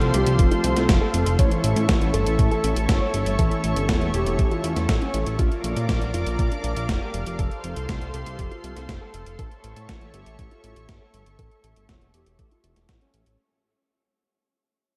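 A dreamy mix soaked in huge ambient reverb sets a nostalgic, bittersweet tone in this italo disco fragment, cut from a longer piece and fading out across its whole length. Up front, a fat, detuned sawtooth analog bass is thickened by tube saturation, and a thumpy, sampler-style electronic kick drum enters at 0.4 seconds. An overdriven digital drum machine adds hi-hat and a gated-reverb snare with a small-room character. A lush, warbling unison pad holds sustained chords with chorus throughout, while round, brassy synth stabs with vibrato, cassette tape coloring and tape echo sit in the background until 4.9 seconds. From the back of the mix, a dark, mellow baby grand piano carries the melody through analog chorus and analog delay.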